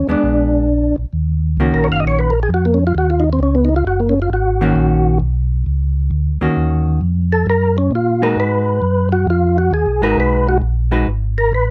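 A swung 4/4 groove carries this bluesy, soulful jazz excerpt, with a tonewheel organ taking the melody in a percussive, key-clicking voice through chorus vibrato and a fast rotary speaker, while a second, round-toned organ holds down the bass through a slow rotary speaker. A dark, clean hollow-body electric guitar picks the accompaniment from 0.1 s, and the organ moves into a solo at 1.1 s as a Bb7b9 gives way to Ebm7 and later Abm7. The sound is close and detailed, set in light reverb with all three parts up front.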